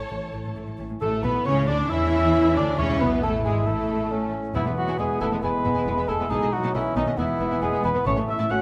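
A straight 4/4 pulse at 136 BPM drives this spirited, dramatic excerpt of a fast romantic symphonic movement in A major, where the lush violins carry the melody over a second violin line, a portamento viola section, ringing harp arpeggios and a bowed bass of cellos and double basses, joined at 1.0 s by a mellow cor anglais and hollow silver flute on second lines, background French horn chords and hard-mallet timpani, with a close-miked bassoon entering at 1.9 s, all set in a moderate concert hall reverb.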